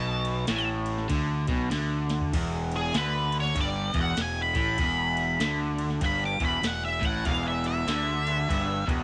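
Blues rock power trio with a southern rock edge, this gritty, driving excerpt has a swung feel, with a dark, up-front octave-fuzz lead guitar carrying the melody through wah, distortion and slapback echo over a crunchy, double-tracked overdriven riff guitar and a growly, punchy fuzz bass. A soft vintage rhythm box with deep kick and crisp snare enters at 0.2 seconds and plays a fill around 1.7 seconds as the harmony moves from Asus2 to E7. At 7.3 seconds a thick, overdriven tonewheel organ with key click and lush chorus joins in the background with sustained chords, the whole band set in a light reverb.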